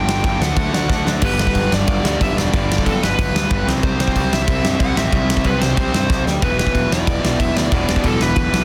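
Punk rock at 185 BPM in a straight 4/4, angry and urgent, cut from a longer piece: a dark, high-gain lead guitar carries the melody with distortion and delay over a bright, tight distorted guitar riff and a warm overdriven guitar riff in the background, while a growly fuzz bass sits beneath and a big, up-front acoustic drum kit with a fat snare, punchy kick and bright crash cymbals drives from 0.1 seconds, throwing in fills at 0.9 and 6.1 seconds as the chords move through D, G, C and E5, all in a dense, heavily limited modern master with light reverb.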